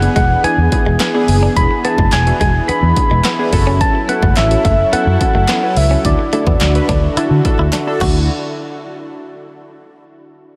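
A dark, round, foam-muted electric bass sits up front with sidechain pumping in this carefree, summery dance-pop cut in D major at 107 BPM over E7, F#m7 and Dadd9 chords, carrying a gentle, keys-like FM synth lead melody with vibrato and tape echo, pulse-and-sawtooth analog keys with a filter sweep, a detuned sweeping pad with a filter swell and slow attack, a clean direct-recorded guitar riff from 0.2 seconds in lush chorus, a punchy analog drum machine with crash, snare, claps and hi-hat that closes on a fill at 7.7 seconds, and a very quiet, crisp group handclap from 1.0 seconds, the whole mix soaked in huge, dreamy reverb.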